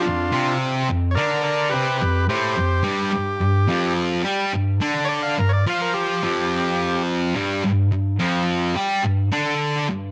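A straight 4/4 rock groove at 107 BPM drives this rowdy, raw fragment of a longer piece, where an up-front, buzzy vintage combo organ with light vibrato and overdrive takes a solo melody until 7.0 seconds, while a thick, bright, double-tracked fuzz guitar plays a picked riff through to 10.1 seconds over an F5 chord and then, from 2.8 seconds, a G5 chord, all set in light reverb with a digital ambience.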